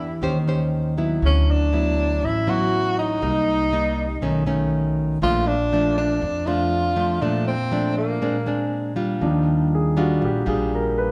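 Breezy and relaxed, this short bossa nova excerpt opens with a mellow tenor saxophone singing the melody in a subtone with vibrato and scooped notes, set back in the room, over fingerpicked nylon-string guitar and woody pizzicato upright bass. After a break beginning at 7.2 seconds, the saxophone stops at 8.7 seconds and a natural-sounding concert grand piano with deep bass steps up front for a brief solo from 9.2 seconds. A lush recital-hall reverb gives the whole recording the airy glow of a church or concert hall, as chords drift from Eb6 through Cm7 and Bbmaj7 to a closing Ebmaj9.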